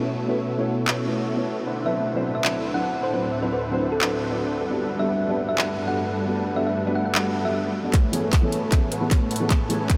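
Future bass at 153 BPM in a half-time feel, this lush, playful passage cut from a longer piece opens with a felt-muted upright piano, soft and intimate with audible action noise, laying down accompaniment beside an ethereal, airy pad that holds sustained chords through ensemble chorus and its own reverb. A dense, compressed supersaw riff, thick with detuned unison voices and a sub octave, pumps against the sidechain alongside the piano and pad, moving through chords from B9sus4 to D13 and Gmaj9. A trap drum kit with handclaps and metallic hats enters at 0.9 seconds, and a round, tine-like synth pluck in the manner of a thumb piano carries the gentle melody from 1.9 to 7.6 seconds, its decaying notes treated with chorus and delay. At 7.9 seconds the harmony shifts to Amaj9 as a build-up begins, with a drum fill, a filter sweep on the supersaw, and a hard-clipped electronic kick pushed up front. 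A huge ambient reverb soaks the whole mix, giving it a dreamy quality.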